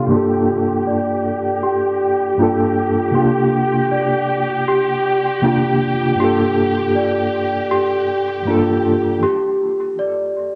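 Melancholic and cinematic, this trip hop excerpt drifts over Gm7 and C9sus4 chords. A reedy, slightly out-of-tune electric piano with fast tremolo and tape echo sits up front, while a dark, distant violin section holds lush bowed chords under a filter sweep. A delicate, bell-like celesta ripples arpeggios through analog delay and its own sweep, and it rings on through the break from 9.2 seconds to 10.6 seconds in an echo-heavy mix with spring reverb.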